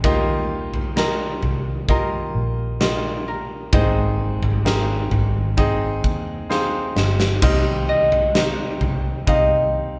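A ringing concert harp carries the melody from 1.0 s in this longing, heartbroken pop ballad in C minor at 65 BPM. It rests on a brilliant, up-front grand piano that plays a fill at 6.0 s, a dark, round, foam-muted fingered electric bass, and a huge arena drum kit with a fat snare, punchy kick and bright cymbals, whose fill leads into the Cm change at 7.4 s, the band playing together in one room washed in wet studio reverb in this fragment of a longer piece.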